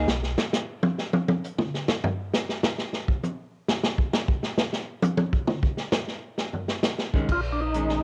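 Soul jazz organ trio in a bluesy, late-night mood, swinging at 133 BPM in 4/4, cut from a longer piece and captured as a home recording on cassette with light reverb. A vintage drum kit carries nearly the whole stretch, taking a drum solo from 0.1 to 7.3 seconds across crash cymbal, hi-hat, kick, snare and toms, with a punchy kick, medium-tuned snare and a rolled-off top that sits up front in a small, natural room. The tonewheel organ's piping, scooped bass and the dark, clean picked hollow-body electric guitar sound only briefly at the start, then return as the harmony moves from an Eb7sus4 toward Bbm7. At 7.3 seconds a fat, lightly overdriven percussive tonewheel organ takes the melody in a narrow range from D4 to F4, with second-harmonic percussion, audible key click, chorus vibrato and a slow rotary speaker. Tape coloring on the drums, guitar and melody organ lends the recording a worn, intimate character.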